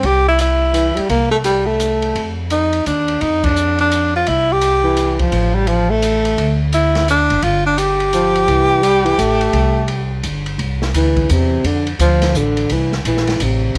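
Swinging and playful, this short small-group jazz piece moves at 171 BPM in a swung 3/4 in C mixolydian, with a clear, close-miked tenor saxophone carrying the melody with vibrato and scooped notes until 10.2 s, while a breathy, whispered baritone saxophone adds a dark, subtoned second line and takes over as soloist from 10.6 s. Underneath, a woody pizzicato upright bass sits up front alongside an airy, polished drum kit with dark cymbals, a medium-tuned snare and a boomy kick, the whole band hitting an accent at 3.4 s. Both saxophones carry plate reverb, and the saxophones and drums share a cassette-tape tint that, with the small-room ambience, gives it an intimate home-recorded feel.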